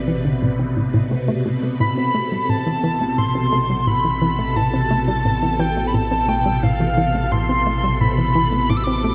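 Drenched in a wet plate reverb with a long tail, this short cut from a longer piece of ambient, sequencer-driven space music feels hypnotic and mysterious, moving at 87 BPM in a straight 4/4 around an A minor add-nine chord. A swirling, vintage string machine sits up front with slow-attack sustained chords, its ensemble chorus and phaser giving it a bright, churning sheen. Beneath it a round, deep analog bass holds a low A, while a very quiet pulsing gated texture, tempo-synced and softly blurred by its own reverb and chorus, hovers in the background. A hollow, bouncy square-wave pluck drives a riff in the low-middle register, detuned and wave-folded, colored by chorus, cassette tape wobble and delay, with a filter sweep running across the synth arpeggio throughout. At 1.8 seconds a shimmering, retro pulse-width lead enters high and up front, its detuned tone spread by chorus and delay.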